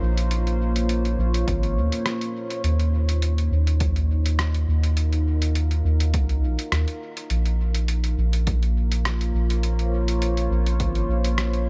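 A round, soft dub sub bass sits up front in this hazy, spacious ambient dub fragment, beneath a deep, moody pad of detuned sustained chords with chorus and reverb that move from Bbmadd9 to Ebm9 and back, while a muffled, pitched-down, overdriven sampler-style kit ticks out swung hi-hat and rim clicks through dub echo and a punchy electronic kick pulses in the background from 1.5 seconds, all glued by tape saturation in a dry, close sound.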